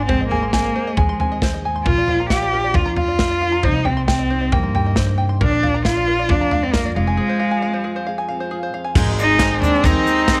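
A rich, bowed cello carries the melody up front from the opening, with expressive vibrato and portamento over a fingerpicked steel-string acoustic guitar in the background, a twangy, plunky open-back banjo playing arpeggios, and a woody, growly pizzicato upright bass. A polished, airy country drum kit with a punchy kick, medium-tuned snare, toms and crash cymbal joins almost at once, setting a straight 135 BPM in 4/4 with a hopeful, uplifting indie folk feel in Bb mixolydian. The chords move from Ab through Bb, Cm and Fm, and a break arrives at 7.2 seconds. At 9.0 seconds the banjo stops and the arrangement builds on an Abadd9 chord: a smooth solo trombone adds a second line, a shimmering, octave-doubled twelve-string guitar picks in the background, and a very quiet, dark brass ensemble holds sustained chords with light vibrato, while a grainy egg shaker ticks softly. Crisp, very quiet group handclaps enter at 9.4 seconds, and light reverb with studio ambience gives this excerpt, cut from a longer piece, a natural room sound.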